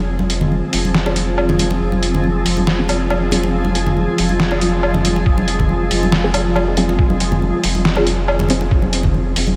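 Deep dubstep with a cavernous, meditative mood, this excerpt moves in a half-time feel with a light swing and rests on a single F minor chord throughout. A granular cloud pad holds blurred, evolving chords with a bright, cloudy sheen and vintage sampler grit, while a round, soft dub sub bass sits deep and up front beneath it. A reversed, swelling texture drifts in the background with a dreamy, detuned chorus shimmer, and congas with a thick-skinned, live-room sound arrive at 0.2 seconds, their hits trailing into dub echo. A gritty, pitched-down trip hop sampler-style kit of hi-hat, snare and woodblock sits tape-warm and compressed up front, joined at 5.3 seconds by a thumpy electronic kick. Muted, detuned chord stabs with a phaser and dub echo flicker in the background as a filter sweep on them carries the whole passage as a build-up, all bathed in a huge ambient reverb that leaves the mix soaked and hazy.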